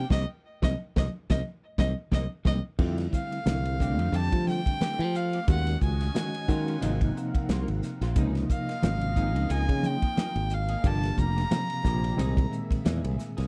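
This driving, funky electric jazz fusion excerpt opens with a biting, earthy violin carrying the melody with light vibrato and a smooth top, over a bright, growly fingered bass, compressed clean guitar stabs with ensemble chorus, and a punchy, up-front studio drum kit, all hitting a band accent in the opening seconds. Behind them, a reedy electric piano, overdriven and gritty through a combo amp with fast tremolo, plays the accompaniment and adds a fill from 0.8 seconds, while the drums, in a pumping room, also fill just before the change at 2.8 seconds. Very quiet vintage congas with a thin, damped skin and soft hands add percussion, and the whole groove rides a swung sixteenth-note feel. At 2.8 seconds a swirling, detuned sawtooth pad with phaser and chorus enters with a slow attack, sustaining evolving chords in the background. The harmony moves through extended chords such as Fmaj9, Ebm9 and Db69 before arriving on C7alt, and the sound is dry and close with little reverb.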